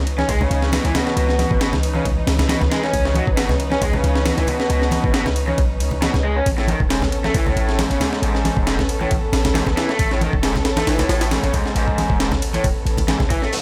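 Breakbeat at 136 BPM with a slight swing on the sixteenths, this swaggering, funky excerpt moves from C#m9 to Amaj9 at 6.5 seconds, driven by an up-front, compressed, gritty sampler-style drum kit with a thumpy kick, high-tuned snare and ride cymbal, while bright, close congas with hard hands sit in the background. A deep, boomy 808-style bass with a sine tone and noise layer anchors the low end beneath an overdriven, lo-fi electric guitar riff coloured by a low-pass filter and tape echo. Dark, veiled con sordino strings hold distant bowed chords with vibrato, roughened by 12-bit sampler grit and sidechain pumping, before an electronic downlifter closes the passage at 13.5 seconds.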